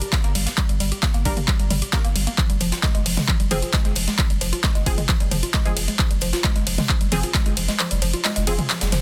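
Densely limited and lightly reverberant, this relentless, dark peak-time techno excerpt drives at 133 BPM in a straight 4/4, with an overdriven electronic kick, a punchy, up-front analog drum machine of handclaps, hi-hat, ride and pumping toms, a very quiet, airy acoustic kit of hi-hat and snare, a thick saturated sub bass under a low-pass filter, a woody wave-folded pluck riff trailing dub echo, and a muted, detuned sawtooth chord stab arriving at 1.3 seconds through chorus and digital delay, moving from Gm to Fm at 2.4 seconds before the kick drops out at 7.8 seconds.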